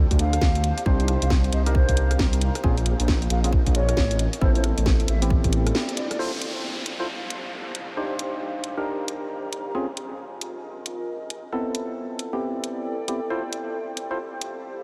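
UK garage in the two-step style, this bouncy, late-night excerpt from a longer piece swings its sixteenths and floats in a dreamy mix soaked in huge ambient reverb. A deep, rumbling detuned saw bass sits up front alongside a tight, layered electronic kick, both driving the opening until a short break and band accent at 5.7 seconds. A garage kit with a cracking snare, rim clicks and bright hats carries on through the whole passage, while a hollow, organ-like stab with chorus and analog delay punctuates the minor ninth chords from 0.9 seconds onward. A mellow wooden flute with vibrato drifts distantly through the first section, its pure tone trailing analog echoes. Throughout, a warbling, nostalgic tape-like pad with chorus and sidechain pumping lingers in the background, and an electronic downlifter sweeps in once the second section begins at 6.2 seconds.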